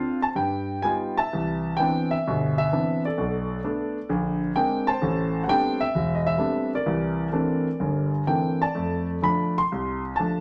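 A warm concert grand piano opens this solo jazz excerpt on a Gaug7 before settling into Cmaj9 at 1.3 seconds, moving through relaxed, swung harmony at 129 BPM with a rubato feel in C major. Sitting up front with deep bass and audible action noise, the intimate, natural-sounding instrument spans a broad register as the chords pass through Bm7, Bb9, Am11 and C13. A wet studio reverb surrounds the playing as it reaches F6, and the recording is cut from a longer piece at 10.4 seconds.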